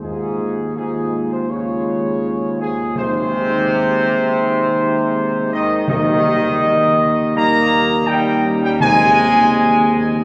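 In a straight 4/4 at 82 BPM, this regal, solemn classical brass chorale sets a dark trumpet section's melody up front over sustained chords from a clear trombone section with light vibrato and a smooth-topped French horn section in the background, anchored by a dark tuba bass on Eb, while very quiet timpani with hard mallets enter at 3.0 seconds, all heard from further back in a cathedral whose long, wet reverb surrounds this cut from a longer piece.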